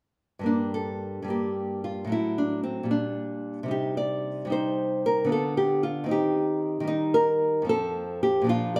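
A solo nylon-string guitar enters at 0.4 s, fingerpicked, small and up front in a moderate recital-hall reverb. This is a classical, baroque-style dance in G minor and 6/8, counted at 75 BPM in dotted quarters, and the rubato feel gives it a grave, introspective mood. The guitar ranges from F2 to D5 and carries the whole texture with an acoustic, warm tone. The harmony moves from Gm through Am6, Gm/Bb and Cm, then on to Bdim/D, Cm/Eb and Eb before reaching F near 7.7 s. The passage is cut from a longer piece and closes at 8.8 s.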